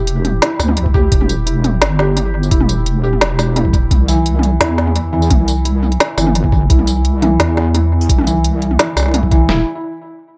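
A half-time groove at 172 BPM in 4/4 drives this dark, tense drum and bass drop, cut from a longer piece. An overdriven electronic kit sits up front with a woody snare, smooth hi-hats, tambourine and toms, colored by analog delay, and a pitched-down, sampler-style boom bap kit joins at 0.9 s with a thumpy kick and medium-tuned snare, its gritty, compressed sound carrying a small-room, tape-warm character. Underneath, a deep wobble bass built from detuned square and sine tones holds sustained, saturated notes with chorus. A felt-muted upright piano plays soft, intimate arpeggios with audible action noise, its tape echo adding to an echo-heavy mix with light reverb. The harmony moves from E minor to C at 3.9 s.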